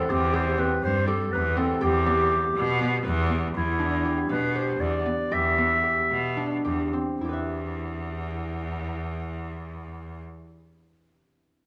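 Contemporary chamber music in an uneven 7/8 metre, pensive yet urgent, cut from a longer piece. A warm, roomy solo clarinet carries the classical-style melody until 6.7 seconds over mellow, ringing fingerpicked harp arpeggios and a biting, bowed cello bass line with vibrato. The pulse slows from 3.5 to 7.2 seconds, and the harp and cello carry on after the clarinet, the harp ringing to 10.4 seconds in a reverberant recital hall.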